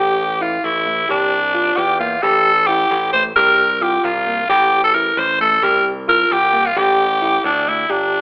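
A raspy, gritty tenor saxophone sits up front with an edgy vibrato, carrying the melody across this brooding, driving 8.2-second excerpt of progressive instrumental music in 5/8 at 264 BPM counted in eighths. Beneath it, a bell-like tine electric piano spins clean arpeggios while a growly, punchy picked electric bass anchors the low end, the harmony rocking between A5 and suspended C chords. The band plays live in one room with a wet stone reverb and a telephone-like tone.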